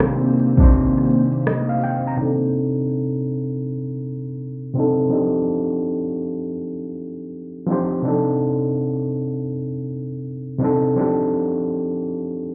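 An organic electronic drum kit sets an 82 BPM lo-fi hip hop groove in 4/4 with a 16th-note swing, its deep kick, crisp hats and rim click sounding tape-warm and up front before dropping out at 2.0 s, while a hollow, flute-like pad with a warbling chorus sustains Cm7 softly in the background until 2.2 s. An overdriven, barky reed electric piano plays from the very start, and from 2.2 s it carries the reflective, hazy mood alone in C dorian, its gritty combo-amp tone shaped by a low-pass filter sweep as the harmony moves between Cm69 and F13. The whole excerpt sounds muffled, as if heard through a wall into a club with a moderate reverb.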